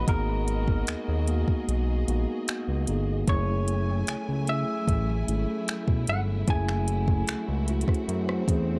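An up-front, saturated synth bass anchors this late-night, longing contemporary R&B excerpt alongside an electronic drum kit of soft kick, metallic hi-hat, finger snaps and rim click, while a clean, twangy electric guitar carries the melody over a mellow tine electric piano, both touched with analog delay, dark, lush bowed strings hold sustained chords, a very quiet glassy wavetable pluck glints briefly at 4.1 seconds, and a background swell enters at 7.8 seconds in a dry, echo-heavy mix.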